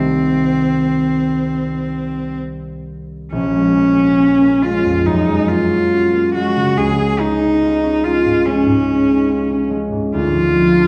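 A rich, bowed cello sings a smooth, even melody with vibrato over a mellow, thumb-plucked concert harp whose ringing accompaniment sits just beneath it, both up front from the very start of this hazy, wistful fragment of an impressionist classical duo. The pair moves in a rubato 4/4 at roughly 65-72 BPM, shifting from C minor to Bb minor at 3.3 s as the harmony drifts through Bbm7, Gbadd9 and Dbadd9 before landing on Dm7 at 10.1 s. A wet recital-hall reverb, heard from further back in the room, lends the duo a soft, distant glow.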